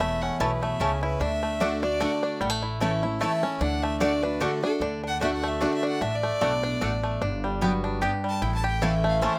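This joyful, rustic bluegrass opens with a twangy, fingerpicked banjo carrying the melody up front, a rich, earthy fiddle on a second line, bright dreadnought guitar picking out the accompaniment, and a growly upright bass plucked underneath. At 150 BPM in a swung 3/4, the tune sits in D major, moving between A and D before turning to G and back to A near the close. The fiddle solos across the whole passage, a single close, bowed voice with light vibrato and an airy bow. From 0.4 seconds a mandolin adds picked stabs, its double strings colored by tape echo. A moderate booth ambience surrounds the players, and the passage is cut from a longer piece.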